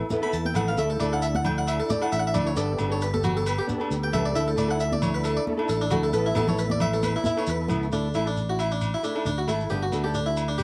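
Highlife guitar band music in D major, joyful and danceable, moving at 135 BPM in 4/4 with a light swing on the sixteenths, cut from a longer piece and captured as a home cassette recording in a moderate studio reverb. An airy, plucked harpsichord with a single set of strings sits up front, taking a solo of bright arpeggios from the start until 7.9 seconds over chords that shift between Asus2, Dsus2 and Gadd9. Beside it, a punchy, amped fingered electric bass holds the low end, while a fingerpicked flamenco guitar supplies warm accompaniment with a touch of plate reverb and plays on until 10.4 seconds. In the background, a lightly overdriven tonewheel organ with key click, chorus vibrato and a slow rotary speaker holds clear sustained chords, dropping out at 7.9 seconds along with the high-tuned, thin-skinned congas, which are played close and dry with soft hands. Grainy, band-limited shekere and distant, ringing agogo bells heard as if in a large room carry the percussion through to the end.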